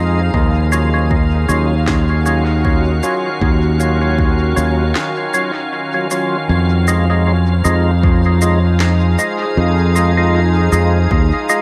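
Ambient dub at 78 BPM in 4/4, with a lazy swing on the sixteenths, this meditative, hazy excerpt is cut from a longer piece and sits in an echo-heavy digital ambience. A soft additive organ-like pad holds sustained chords throughout, its pure, detuned sine tone bright and slow to bloom, thickened by ensemble chorus and its own reverb. Over it, a percussive tonewheel organ plays fat, lightly overdriven stabs through a slow rotary speaker and dub echo, moving from Ebm9 to Fm7 at 6.5 seconds. A fingered electric bass sits up front with a warm, amped presence, while an electronic kick drum, deep and layered with a tape-tinged weight, enters at 0.3 seconds. An electronic shaker and woody snare, set back in a large room and trailed by dub echo, join at 0.7 seconds, and a break from 5.0 seconds leads into the second section.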